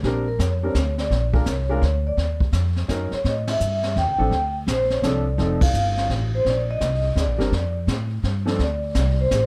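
Swinging in 3/4 at 168 BPM, this relaxed small-group jazz excerpt in Bb major pairs a distant, roomy brush kit with dark cymbals, a high-tuned snare and a boomy kick with a thumpy pizzicato upright bass and natural, woody upright piano chords, while an airy vibraphone with a fast motor vibrato carries the ringing melody from 0.3 s, the band hits accents at 3.4 and 5.6 s, and light reverb gives the whole a dark production.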